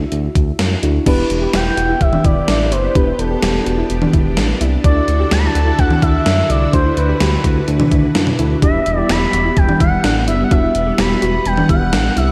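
Nocturnal and cool, this synth-pop excerpt moves at 127 BPM in E minor, where a smooth, expressive sawtooth lead with vibrato carries the melody over muted, felt-like keys and a mellow, up-front synth bass, while a gated 80s digital drum machine lays down a thumpy kick and an overdriven, gated-reverb snare. At 1.1 seconds a shimmering, vintage string machine enters with sustained violin chords, alongside soft, round pluck arpeggios touched with tape echo. The harmony shifts between Dadd9 and Em, and a lush hall reverb soaks the mix in a dreamy digital ambience.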